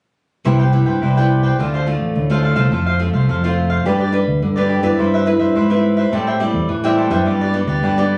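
Playful and lively, this short samba fragment opens with a small, fingerpicked nylon-string guitar up front at 0.4 s, joined almost at once by a crisp, picked cavaquinho and a growly, amped fingered electric bass whose envelope filter gives it a bright bite, all heard through a room-captured phone recording with moderate studio reverb and compression as the chords move from Cmaj7 through Dm7, F, G, Cmaj7/G and Am7 before settling back on G.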